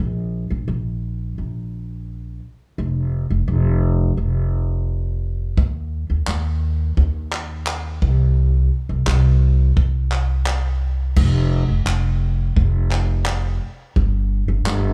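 Dry, small-room sound frames this carefree, heartfelt acoustic pop excerpt at 86 BPM in a straight 4/4, where a woody, thumpy pizzicato upright bass on gut strings carries the low end alone from the start until a natural country drum kit with a tight kick, crash cymbal and handclaps joins up front at 5.6 seconds, before the music shifts into a new section at 11.2 seconds.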